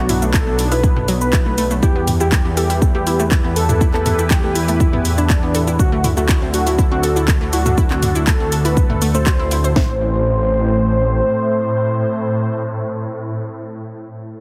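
A punchy kick and cracking snare sit up front in this cinematic, melancholic melodic techno fragment, layered with handclaps, warm hats, shaker and toms in a small room until about 9.9 seconds, while a fat, dark detuned analog lead with chorus, vibrato and digital delay carries the melody over a bright, sweeping resonant pad, lush unison pluck arpeggios with tape echo in the background, and a menacing, saturated saw bass that swells through its filter, all four pumping with sidechain, as a very quiet, warbling granular drone creeps in from 5.8 seconds, the whole mix heavily compressed into a radio-like sound.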